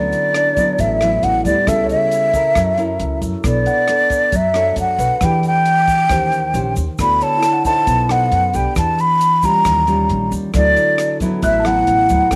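A breathy concert flute carries the melody up front from the first moment, tongued and played with vibrato and lifted highs, its slightly unsteady tone giving this breezy, sophisticated bossa nova excerpt in D major a human touch at 135 BPM. Beneath it, a fingerpicked nylon-string guitar lays down full-bodied classical chords, while a woody pizzicato upright bass thumps out the low end. A clear concert grand piano sits in the background, dropping out at 8.3 seconds and returning at 11.4. From 0.1 seconds a compact cocktail kit adds hi-hat, rim click and a dry, punchy kick, with a grainy egg shaker faint behind it. The harmony moves through lush changes such as D69, C#m7b5, Bm9 and Eb9 before coming home to D69, all framed by light reverb and a small-room ambience.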